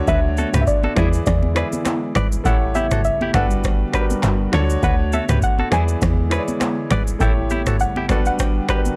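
A booming, overdriven analog drum machine sits up front with a deep kick, snaps, claps, rim clicks, shaker and toms, driving this romantic, breezy afrobeats excerpt in swung 4/4, while a woody, punchy log drum bass, a clear concert grand piano with audible action noise, a bright, twangy clean electric guitar riff, a soft, round chorused pluck melody, a hollow, flute-like pad in the background and high-tuned congas fill out a gritty, tape-saturated sound over a Dmaj7, E7, A7 and Gmaj7 progression.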